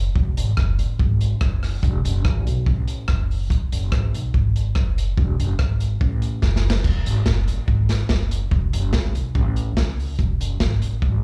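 A crunchy, gritty breakbeat drum kit sits up front in this upbeat, joyful ska clip, its saturated kick, snare, rim clicks, hi-hat and dark crash cymbals carrying a rolled-off top, with a short drum fill at 6.4 seconds. A woody, thumpy upright bass, plucked pizzicato on steel strings, holds the low end alongside it. The short cut from a longer piece has the feel of a live gig heard through a club PA.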